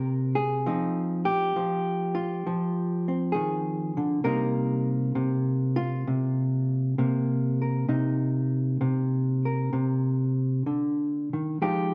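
Solo jazz in C minor, this short excerpt cut from a longer piece has a moody, late-night feel at a slow 66 BPM in 4/4, with a swung, rubato phrasing that lets time stretch and breathe. A lone hollow-body electric jazz guitar carries everything from 0.0 to 11.9 seconds, fingered cleanly and sitting up front, its dark, compressed tone ranging between C3 and Bb4. The harmony moves from Cm7 to Fm7 at 0.7 seconds, then settles back on Cm7 at 4.2 seconds. A reverberant stone room surrounds the guitar with a lingering tail of 1.3 seconds, giving the intimate performance a live, shadowy atmosphere.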